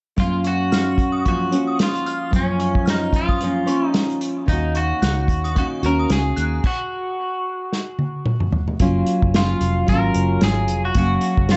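Indie and bedroom pop at 111 BPM in Gb major, nostalgic and hazy, with a gentle swing, as an up-front, fingerpicked nylon-string guitar and a bundle-stick acoustic kit carry a twangy, slightly broken-up electric guitar melody drenched in lush chorus and tape echo, while an inharmonic FM synth chime rings softly in the background until 6.5 seconds. A round, foam-muted electric bass joins at 4.5 seconds, then the band stops at 6.6 seconds before a drum fill leads back into the groove at 8.8 seconds. The production is dark and warm, with moderate studio reverb and a touch of 12-bit sampler grit on the drums.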